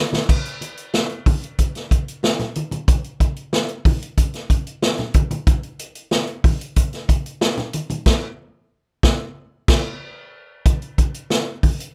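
A dry, rough home-demo sound frames this sly, driving funk excerpt, built from a roomy acoustic big-band drum kit with a punchy kick, medium-tuned snare, hi-hat and crash sitting up front, plus damped, low-tuned congas with a thick-skinned, vintage tone tucked well beneath. The kit opens with a fill at 0.0 seconds, and the straight groove carries through a band accent from 8.1 seconds before shifting into a new section at 10.7 seconds.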